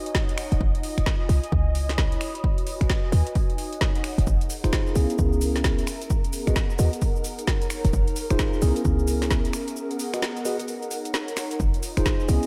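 Moody and bouncy, this two-step UK garage excerpt swings its 16ths over minor seventh chords, carried by a silky, dark string machine and an airy, breathy pad that both pump with sidechain, with a punchy, tape-toned electronic kick and a tight, sine-based 808-style bass up front. An overdriven garage kit of finger snaps, shaker, woody snare and metallic hi-hats rides along, while a mellow tine electric piano enters with filtered stabs at 4.6 seconds, trailed by diffuse ambient delay. A break arrives at 9.8 seconds, all set in a light digital ambience.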